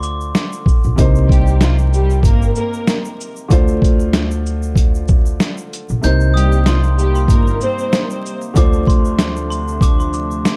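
A gritty, thumpy, pitched-down, tape-warm boom-bap drum kit sits up front in this moody 95 BPM hip-hop excerpt in C dorian, swinging over a woody pizzicato upright bass, clear vintage upright piano accompaniment and a faint grainy tube shaker, while lush bowed symphonic strings stab from 1.3 seconds. After a brief opening flicker, a sparkling glockenspiel melody with delay returns as the kick briefly drops out at 6.0 seconds, and a hollow, chorused flute-like pad joins at the same moment, all wrapped in small-room reverb, vinyl crackle and dark, warm production.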